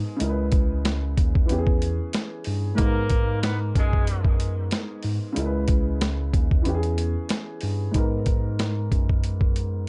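A dry, dark mix with its top end rolled off frames this tough, moody boom-bap excerpt, where a gritty, pitched-down sampler kit with a thumpy kick and high-tuned snare sits up front over a swung groove. A woody, boxy upright piano, filtered and tape-worn, carries the chords alongside a clean, direct tine electric piano holding down the bass. A tight, punchy horn section with light vibrato stabs in briefly from 2.8 to 4.4 seconds, colored by tape echo, before a break at 6.7 seconds leads into a new section.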